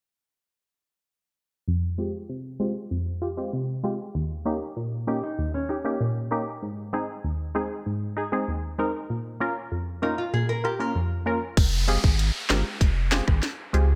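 Dancehall with a bouncy, sultry mood, opening at 1.7 seconds on crisp, detuned wavetable chord stabs under a filter sweep, soon joined by arpeggios from a small, fingerpicked nylon-string guitar. At 11.6 seconds a tight electronic drum kit with sharp snare, handclaps and rim clicks arrives up front alongside a deep, saturated sub bass and an electronic downlifter, while the mellow stabs carry on. Moderate plate reverb gives a digital ambience to the bright 1980s-style production.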